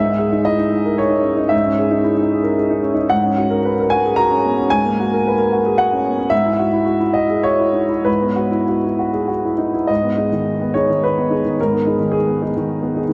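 Soaked in a huge, dreamy reverb with a seven-second tail and lossy compression artefacts, this short fragment of a neoclassical minimalist piece is wistful and melancholic. A solo grand piano sits up front, intimate and slightly boxy, with audible action noise and long sustain, as it moves in a rubato 3/4 at roughly 93-115 BPM in G# minor, spanning G#2 to A#5. Chords drift over a G# bass, from C#madd9 through F# and Eadd9, before the piece shifts to a new section and settles on G# minor at 9.9 s.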